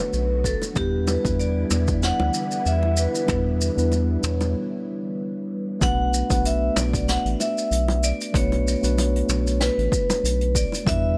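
A light reverb and small room ambience give this short sunset chillout excerpt an intimate, smooth feel, its wistful mood settling in B minor at 95 BPM with a gentle 16th-note swing. A metallic, ringing vibraphone struck with hard mallets carries the melody through a tape echo, its medium motor vibrato shimmering over a mellow, clean tine electric piano that supplies the accompaniment. Underneath, a round, deep analog bass sits up front with a dark, sustained tone, while a silky string machine, colored by phaser, ensemble chorus and vintage 12-bit sampler grit, holds soft chords until 5.8 seconds. The rhythm blends a jazz brush kit with a high-tuned snare, hi-hat, shaker and toms, a punchy overdriven electronic kick, and low-tuned acoustic bongos. The harmony moves from Bm7 to Em7 and back to Bm7, with a break from 4.6 seconds marking the turn into the second half of the passage.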